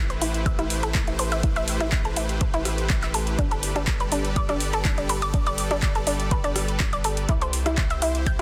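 Bittersweet and driving, this progressive house excerpt at 123 BPM pairs a lush, detuned supersaw pad holding sustained chords over Am7, Gadd9 and C with a thick, tube-saturated sub bass, a round, nasal analog pluck spinning arpeggios through chorus and digital delay, a pop drum kit of handclaps, metallic hi-hat and rim click with overdrive, and a deep, tape-tinged electronic kick entering at 0.5 seconds, while sidechain pumping moves the pad, bass and pluck inside a dense, heavily limited mix with light reverb.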